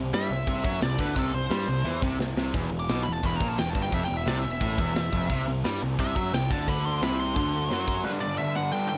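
Dark and heavy, this fast 174 BPM heavy metal excerpt pairs two sludgy overdriven guitar riffs (one sitting in the background) and a growly, fuzz-drenched picked bass with a tight, up-front drum kit of bright cymbals and a tight kick, while a nasal lead guitar with a parked wah and slapback echo solos high above from 0.1 seconds over C5, Em and G5 chords, punctuated by drum fills at 1.9 and 7.7 seconds in a dry mix.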